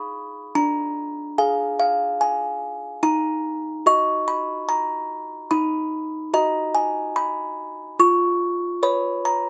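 A delicate, tinkling music box plays alone and up front from 0.0 to 9.5 seconds in this short, innocent and tender classical lullaby fragment in Eb minor at 72 BPM in a straight 3/4. Its small-box plucked tone is slightly out of tune, the tuning reference sits at A4 = 441 Hz, it spans D4 to Db6 under a light reverb, and its harmony moves from Fdim through Bb7/D to Ebm and on to C#7/E#.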